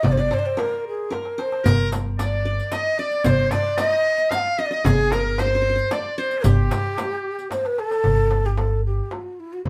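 Stately and festive, this excerpt from an Arabic maqam ensemble moves at 112 BPM in a straight 3/4 in G maqam kurd, with a breathy, mellow ney carrying the melody up front, its vibrato and soft attack set against a plucked, bright-edged qanun second line and a woody pizzicato upright bass holding G1. A metal-muted trumpet joins the second line at 1.6 seconds with a buzzy, thin tone, light vibrato and scooped notes, while crisp metal-shell darbuka, a small frame drum and a riq with bright jingles drive the rhythm, the riq playing from 1.7 to 8.0 seconds. Drum fills mark 1.1 and 7.5 seconds before a new section begins at 8.1 seconds, the whole band heard live together in one room with a wet studio ambience.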